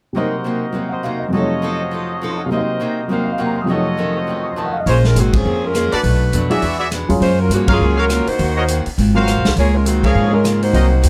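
A fast, brassy big band swing excerpt in Bb minor at 204 BPM opens with bright picked archtop guitar, an intimate baby grand piano with audible action noise, and a clear, tight trumpet section punching out stabs with vibrato over a minor ii-V turnaround. At 4.9 seconds the smooth-topped saxophone section takes the melody with light vibrato, joined by woody, thumpy pizzicato upright bass sitting up front and a vintage drum kit with dark cymbals and a tight kick, as the harmony moves through richer chords toward Db6. Full-band accents land at 5.3, 7.7 and 10.0 seconds, captured by close, detailed microphones in light reverb.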